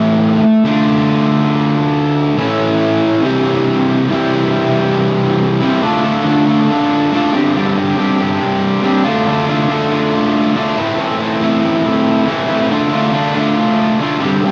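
A dry, close 1970s-style studio sound with light reverb puts a double-tracked fuzz guitar up front, its distorted, picked electric tone trailed by tape echo. This restless, bittersweet rock fragment moves at 140 BPM in a straight 4/4 in D minor, the guitar playing solo across its full 14.5 seconds and ranging from G2 to A4. It passes through Am, Dm, A and C before settling into a stretch that shifts from Dm to Gsus4 at 7.3 seconds and on through Am back to Dm.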